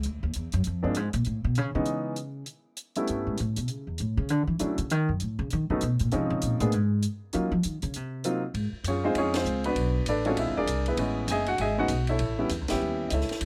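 A plucked upright bass with steel strings carries a solo for the first 8.5 seconds of this excerpt, sitting up front with a woody, warm tone. This is a playful jazz piano trio in 4/4 at a brisk 197 BPM, swinging its eighth notes lightly, and the passage is cut from a longer piece. Just after the start, a clear upright piano joins on melody with a woody tone, a short sustain and a touch of plate reverb, set close alongside the bass. A compact cocktail drum kit sits further back, dry and natural, with dark hi-hat and ride cymbals and a high-tuned snare. The harmony moves through rich extended chords with a brief chordless moment before the second section begins, where the whole band hits accents at 9.3 and 12.7 seconds. The room sound is dry and intimate, caught by close, detailed microphones.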